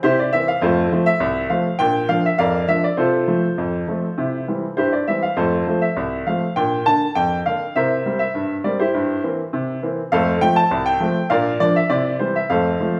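Ragtime piano in F major at 101 BPM in a straight 2/4, this playful, jaunty clip cut from a longer piece features a clear, woody upright piano playing solo and up front from C2 to A5 across 13.0 seconds, moving from a C7 opening through F, Bb and C changes to settle on F, all bathed in the wet 1.3-second reverb of a large studio captured live in one room.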